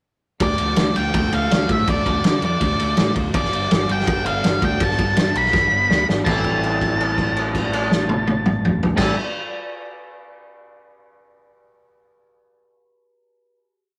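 Restless and cool, this short indie rock piece moves at 164 BPM in a straight 4/4 in A minor, tuned slightly below standard pitch. An up-front octave-fuzz lead guitar carries a hook-driven melody, its dark, distorted tone thickened by slapback echo, while a growling picked bass with bright overdrive drives steady eighth notes underneath. A very quiet, dark overdriven guitar picks arpeggios, and a clean, twangy guitar sits in the background adding volume swells, both sharing a riff role across the same register. The loose acoustic drum kit is punchy and gritty with a rolled-off top, laying down a big rock groove on kick, snare, toms, ride and crash. The pre-chorus moves over Dm and G, and a drum fill from 5.5 to 6.3 seconds leads into a final Am7 chord. There a note is held until 9.0 seconds, all captured with light reverb in a rough rehearsal-room sound.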